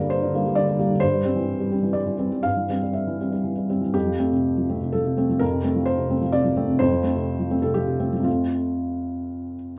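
Neoclassical minimalist piano in 3/4 carries a hopeful, peaceful mood across this brief excerpt cut from a longer piece. A felt-muted upright piano plays solo for the whole 9.8 seconds, its soft, mellow tone sitting up front with an intimate, natural character and audible action noise. The rubato feel lets the phrasing breathe freely, while the instrument's short sustain keeps each note close and muted. The harmony moves from G minor to C over G, settling on F major at 3.9 seconds. A moderate studio reverb gives the piano a gentle sense of space around its range from F2 to F5.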